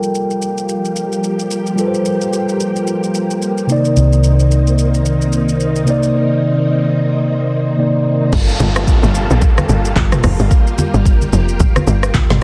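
A dense, heavily limited mix with light reverb carries this late-night, hypnotic amapiano passage in G minor at 110 BPM, its swung 16ths driven by an up-front deep house drum kit with a deep kick, woody snare and smooth hats under vintage sampler grit, while a mellow tine electric piano and a warbling, chorused organ-string pad move from Gm9 to Cm9. A round, hollow-body fingered electric bass appears briefly at 4.0 seconds. At the drop at 8.3 seconds the piano gives way to a tight, punchy log drum bass with a background downlifter, and close, dry, bright congas join moments later to fill out the groove.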